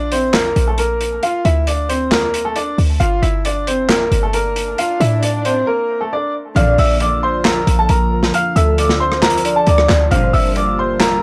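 Menacing and melancholic, this half-time trap excerpt opens with a bright, brilliant grand piano carrying the melody up front, filtered and trailed by analog delay, over a punchy, tight 808-style bass with a saturated edge. A crunchy breakbeat kit of handclaps, hi-hat, rim click and snare sits darker and gritty, its top rolled off like a small acoustic room. An electronic swell rises in the background from 4.5 seconds into a brief break before the second section lands at 6.6 seconds. There a soft, octave-layered synth lead adds a round second line with chorus, tremolo and vibrato, while a detuned analog pad holds sustained chords and lush bowed strings stab in the background. The whole piece has a dry, hardware-and-cassette grit with only light reverb, and the chords move between D minor, G minor seventh and B-flat.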